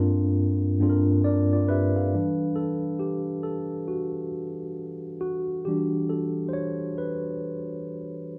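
R&B with an introspective, smooth mood, this short section taken from a longer piece moves at a relaxed 68 BPM in 4/4 with a 16th-note swing. A lone tine electric piano carries the whole passage, its mellow, clean tone sounding through its built-in speakers and sitting up front in the mix. The harmony opens on Gm11 and shifts to Em9 at 2.1 seconds, where the piano takes its solo through to 8.4 seconds, ranging from G2 up to F5. A moderate large-studio reverb gives the instrument a sense of space, and the sound has the feel of musicians playing live together in one room. The tuning sits slightly below standard pitch, at A4 = 439 Hz.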